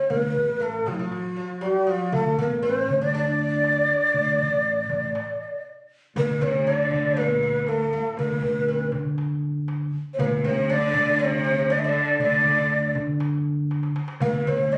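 A breathy, mellow ney leads this stately Arabic maqam ensemble piece in D maqam huzam, its end-blown reed tone carrying vibrato and a crisp attack that sits up front despite a distant quality. Moving at 119 BPM in a straight 4/4, the melody is supported by a woody, fretless oud playing a second line with the deep ring of its double strings. Beneath it, a fingered electric bass adds a growly, amped low end, while a metal-shelled darbuka, played with soft hands, stays in the background with a crisp live-room sound. After a brief break at 5.7 seconds, a lush symphonic cello section enters at 6.2 seconds with a second line of its own, bowed with vibrato and a smooth top. Light reverb and compression surround the ensemble, giving this excerpt, cut from a longer piece, the slightly roomy character of a phone recording, and a drum fill arrives at 13.7 seconds.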